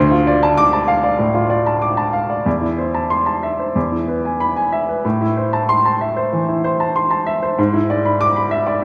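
Pushed and pulled in a rubato 4/4 at about 95 BPM, this agitated, passionate excerpt from a virtuoso classical piano study in A minor features a solo baby grand piano with an open, up-front tone and short sustain. Its part spans D2 to D6 and moves from Dm through Am/E and E to Am before landing on E7/G# at 7.6 seconds, all bathed in the wet reverb of a church or concert hall.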